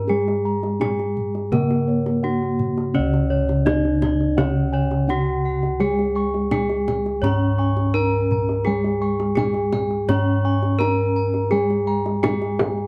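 This serene, ceremonial passage of Javanese gamelan, cut from a longer piece, opens at once with bronze metallophones and bossed gongs sounding together at 84 BPM in a straight 4/4, in C# pelog barang. The lead metallophone carries the melody with a bright, close-miked ring from horn mallets, set up front with a touch of plate reverb. Beneath it, a second metallophone played with wooden mallets gives a dark, smooth accompaniment whose paired tuning produces shimmering beats. Low bossed gongs, struck with padded beaters, anchor the bass with a round, mellow, soft tone. A higher set of gongs adds quiet, dark arpeggios from 0.1 seconds, and the kendang enters at 0.3 seconds with tight, band-limited hand strokes of a vintage character. From 2.9 seconds a bright metallophone joins the gongs in the upper arpeggios, all within a light reverb and a dark, warm production.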